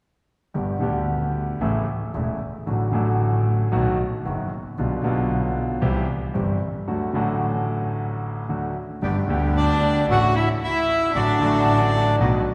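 A brilliant, up-front concert grand piano carries this passionate, nostalgic tango excerpt in G major at a rubato 113 BPM over a woody, bowed double bass with vibrato and portamento, until at 9.0 seconds faint, mid-forward bandoneon stabs arrive and at 9.6 seconds a smooth, reedy bandoneon melody takes the lead beside an expressive bowed violin second line, all bathed in the long, wet reverb of a church.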